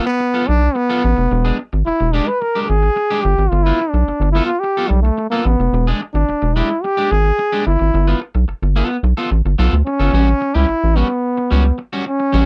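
A dry, close 1970s-style studio sound frames this playful funk cut, where a bright, punchy trombone with light vibrato solos up front until 10.1 seconds over a slightly broken-up, twangy electric guitar moving between G9 and E7#9 chords, while a rubbery, hollow square-wave bass bounces in dark and up front from 0.5 seconds before the harmony lifts to A13.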